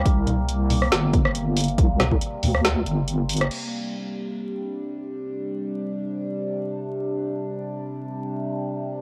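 A resonant sawtooth drone with moving, wave-folded overtones opens this cavernous, heavy deep dubstep excerpt, carrying sustained chords through chorus, phaser and its own reverb, with a cassette-tape tint. Beneath it, a deep, saturated wobble bass built from detuned square and sine tones sits up front with chorus, and it drops out at 3.5 seconds. The half-time groove has a gentle swing: a punchy, layered electronic kick plays until 2.2 seconds, and a deep house kit with a woody snare, dark hats, rim clicks and crash runs until 3.6 seconds. Both drum parts are re-recorded in a small room and have a tape-worn edge. Very quiet acoustic congas add a soft small-room touch near the start. Once the kit falls away just after the drop ends, the drone carries on alone over a Csus2 chord, framed by light digital ambience, the hiss of a cassette home recording and a touch of vinyl crackle.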